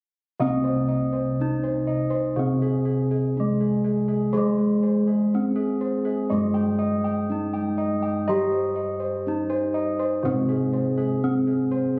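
At 0.4 seconds, four bronze parts begin together in this shimmering, hypnotic passage of Javanese gamelan, cut from a longer piece and moving at a slow 61 BPM in a straight 4/4. A metallophone struck with wooden mallets carries the melody up front, its dark, smooth, ringing tone given a slapback echo. Beneath it a second metallophone, equally dark and smooth under the mallet, plays the accompaniment in a lower register. Bossed gongs spin round, beating arpeggios high above. Another set of bossed gongs supplies the bass with a vintage, band-limited character, sitting close in the mix. The sound carries a moderate concert hall reverb plus a club reverb and compression, captured on a phone in the room, and the four parts play through to 12.0 seconds.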